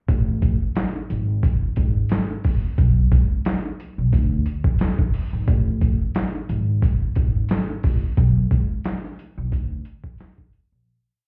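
A compressed, pitched-down sampler drum kit and a woody pizzicato upright bass start together at 0.1 s, setting up a nostalgic, soulful boom-bap hip-hop hook with a light swing. The drums sit up front with a thumpy kick, a medium-tuned snare layered with handclaps on the backbeat, and hi-hat, all tape-warm as if re-recorded in a small room, while the steel-strung bass loops a deep line with muted ghost notes and chromatic approach notes. The recording sounds muffled through a wall, with club reverb and vinyl crackle, before fading out from 8.2 s to 10.9 s.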